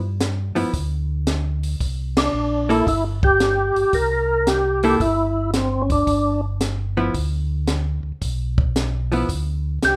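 A round, dark tonewheel organ bass with audible key click and slow rotary speaker opens this soulful, greasy soul jazz organ trio excerpt, joined almost at once by a compact cocktail drum kit with a punchy kick, high-tuned snare, hi-hat and ride, and by a clean, picked hollow-body guitar comping in a compressed, dusky tone. After a band accent at 2.1 seconds, a second, percussive tonewheel organ takes the swinging melody, lightly overdriven with chorus vibrato, second-harmonic percussion and slow rotary, until 6.4 seconds, then returns briefly at the very end. The chords move from G5 to C9 and back to G in light reverb, with the drums sounding smooth and up front in a small room.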